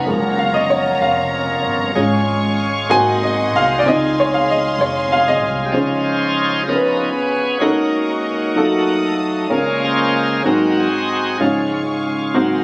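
Hopeful and jubilant, this slow gospel excerpt moves at 63 BPM in a straight 6/8 in D-flat major, taken from a longer piece. A warm grand piano sits up front with intimate, natural tone and audible action noise, leading with a solo through the first 5.7 seconds while an acoustic upright bass gives woody, growly pizzicato support until it stops at that point. From 5.7 seconds the bright tonewheel organ takes the solo, its full, shouting sound lightly overdriven and turning through a slow rotary speaker, having held sustained chords from the start. Alongside them, a studio string section plays smooth, even bowed chords with vibrato, sitting low in the blend throughout. The harmony travels through rich chords such as Gbmaj7, Db7/F, F7b9 and Bbm7 before settling on Db/Ab. The recording was captured on a phone in the room, with light reverb, studio ambience and a faint mains hum.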